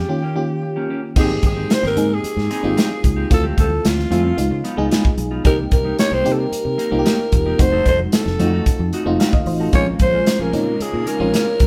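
Polished 1980s jazz-funk pop at 112 BPM in Ab major, breezy and glossy, where a raspy, growling alto saxophone carries the melody up front over a glassy, bell-like FM electric piano with chorus and a dark, clean picked guitar riff, joined at 1.2 seconds by a bright, punchy fretless bass, an airy acoustic drum kit with crash, hi-hat, punchy kick and snare, and very quiet congas, before a lush symphonic string section adds background sustained chords from 9.7 seconds as the chords move from Abmaj7 through Dm7, Db9, Cm7 and F7b9 to Bbm7, all in a live room with light reverb.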